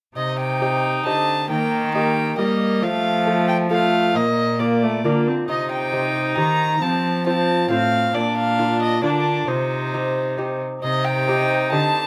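Light reverb lends this short excerpt a soft sense of space, with a single violin placed close and up front while the viola and cello sit more distant behind it. It is a courtly, solemn renaissance-style consort dance in triple time, cut from a longer piece, with all four parts playing from 0.2 to 12.1 seconds. The violin carries the melody with an airy bow and a nasal, gut-string tone in period style. A fingerpicked, double-strung lute supplies delicate accompaniment, some of its courses octave-doubled, while the viola adds reedy inner harmony with light vibrato. Beneath them a rich cello holds the bass, as the harmony moves through Cm, Eb, F and Bb, back to Cm, then through F and Bb again before returning to Cm at 9.5 seconds.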